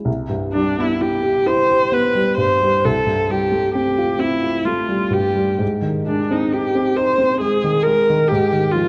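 Dark, warm production and a moderate concert-hall reverb frame this luminous, dreamy impressionist classical duo cut from a longer piece, where an intimate, natural-sounding baby grand piano with audible action noise and short sustain begins the accompaniment at 0.0 seconds and a rich, expressive bowed viola enters at 0.5 seconds with vibrato and portamento, both up front, drifting through Cmaj7, Fadd9/C, Ab and a rootless Dbadd9/Ab in a rubato 6/8 with uneven beats.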